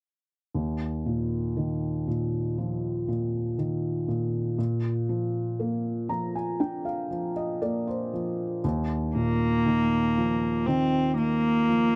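A slow, hopeful and tender pop excerpt at 59 BPM, built on a felt-muted upright piano whose soft, boxy tone carries audible action noise as it moves through Ebsus2 and Bb chords, adding a fill from 5.6 to 8.6 seconds. At 9.2 seconds a single bowed cello enters up front with a dark, nasal, gut-string voice in period style, carrying a brief melody over the returning Ebsus2. The recording is dry and close in a 1970s studio manner, touched with light reverb, and it is cut from a longer piece.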